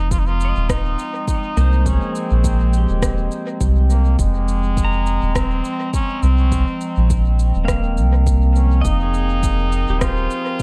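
The mix carries little room sound but is heavy with echo, and the soft, round sub bass sits up front, thickened by tube saturation. This ambient dub excerpt moves at 103 BPM in 4/4 with a light swing on the sixteenths, resting on a single Fm7 chord in F minor, tuned slightly flat to A4 = 436 Hz, with a deep, hazy mood. A warbling, detuned pad holds dark, lo-fi chords through chorus and its own reverb. Above it, a trombone with a metal mute carries the melody in a buzzy, thin, close-miked classical voice, its phrases trailing into dub echo. A layered, tape-tinged electronic kick drum anchors the groove under an overdriven electronic shaker and rim click that also feed into echo. From 0.4 seconds a clean pedal steel guitar, played with fingerpicks and slide, spins arpeggios that scatter through dub echo until the close.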